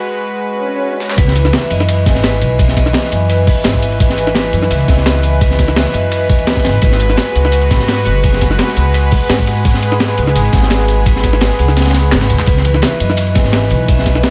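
Rolling, lush liquid drum and bass breaks, a gritty, pitched-up sampler kit of claps, hats and snare layered with a dark, saturated acoustic breakbeat kit and a thumpy electronic kick, arrive after a short build-up in which an electronic swell sounds over a filter-swept vibraphone; a sampler-kit fill at 1.0 s leads into the drop at 1.2 s, where a woody pizzicato upright bass sits up front beneath a detuned sawtooth pad pumping with sidechain and a metallic, ringing vibraphone playing delayed arpeggios, and the kick falls away briefly at 11.8 s around another fill.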